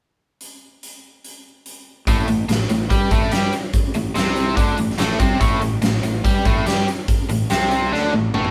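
Driving straight 4/4 drums open this gritty blues rock and southern rock cut, a big acoustic kit up front in a bright stone room with a punchy kick, fat snare, hi-hat and toms laying down the groove alone until 2.1 seconds. There the biting overdriven guitar arrives with a double-tracked, picked riff centered on an A5 power chord, ranging from A2 to G4 and sitting up front in the mix. The fuzz-laden fingered electric bass enters at the same moment, its growly, amped tone spanning A1 to G2 just beneath the guitar. The trio sounds like a band playing live together in one room, with light reverb holding the parts close. A drum fill at 7.9 seconds closes out this portion of a longer piece.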